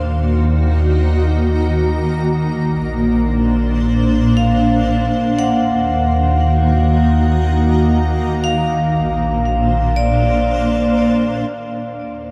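Ambient music at a slow 59 BPM in 3/4, serene and spacious, moving between Eb minor and Bb add9 in Eb dorian, cut from a longer piece. A blurred, evolving granular cloud pad sits up front with sustained chords through built-in and shimmer reverb, while a deep, ominous rumbling drone holds the bass beneath it for the full 12.3 seconds. At 4.4 seconds a vibraphone struck with hard mallets enters with metallic, ringing arpeggios through tape echo and shimmer reverb, all set in a dark production with a moderate cathedral reverb.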